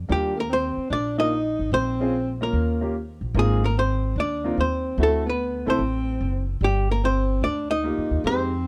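A dry, close studio sound in a 1970s vein frames this short cut from a longer small-group swing and bop piece. The mood is relaxed and warm, with a swung 4/4 feel. An upright bass plays plucked and woody on steel strings, placed up front. From 0.1 s a clean, picked hollow-body archtop guitar carries the melody, its electric tone dark and compressed and also up front, while an alto saxophone with a smooth top and jazz-style vibrato adds a second line in a lower register. A baby grand piano with a natural tone supplies accompaniment through the changes, moving from Ebmaj7 through Bbm7, Eb7 and Ab6 to D7 and Gm7, and drops out at 8.5 s, just before the other parts stop at 8.7 s.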